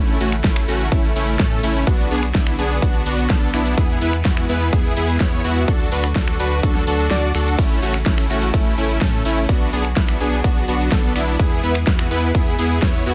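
Anthemic and euphoric, this festival progressive house excerpt drives along at 126 BPM in a straight 4/4, centred on A major and moving through a chord cycle of A, Bm, E and D. Up front, huge, detuned supersaw chords play a lush sawtooth riff with a digital delay and sidechain pumping. Beneath them, a deep, thick saturated sub bass holds the low end, pumping in time with the chords. A punchy, overdriven electronic kick enters at 0.4 seconds and drops out briefly between 7.1 and 7.6 seconds. Alongside it, a big-room drum kit adds a huge snare, metallic hi-hats, finger snaps, shaker, ride and crash, all given an overdriven edge. In the background, a bright, earthy chamber string section sustains bowed chords, heard close and dry with little reverb.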